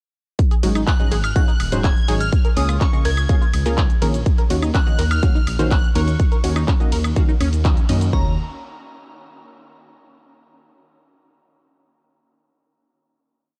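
A dry, dark production frames this expansive, dreamy progressive house piece in Eb minor, moving at 124 BPM in a straight 4/4. It opens straight into a drop at 0.4 seconds: a big-room electronic kit drives a punchy, up-front four-on-the-floor kick with floor tom, while a lighter house kit adds bright hats, handclaps on the backbeat, cabasa, woodblock and ride. A deep, rumbling, saturated detuned saw bass plays off-beat notes under a tight, nasal sequenced synth arpeggio and lush unison pluck stabs in dotted-rhythm chords with open voicing, all pumping against the kick. Above them, a glassy, crystalline FM bell carries the hook-based melody with a warbling, vintage colour from chorus, phaser and tape echo, doubled in unison by a rich, expressive violin section sitting softly in the background. The harmony moves through Ab7sus4, Db6 and Ebm7, a band accent lands at 7.6 seconds, and a final chord rings out from 8.1 seconds.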